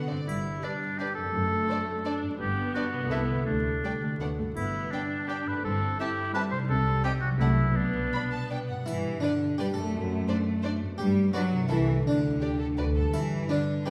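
A long, wet scoring-stage reverb and a layer of vinyl crackle frame this playful, whimsical film cue, cut from a longer piece, in G major at 168 BPM in 3/4. A sul tasto chamber violin section with a soft attack carries the melody, while a second, richer violin section sits in the background on a counterline. A smooth, even studio viola section fills out the harmony above a lush, focused cello section and a distant, expressive double bass section that share the bass, and a ringing, thumb-plucked concert harp spins arpeggios throughout. An up-front classical oboe with light vibrato adds a second line until 8.5 seconds, and a faint triangle glints in the background at four brief moments. At 8.9 seconds the opening phrase returns with a close, dry, brilliant harpsichord taking up the melody, giving the magical, mischievous mood a bright, plucked edge.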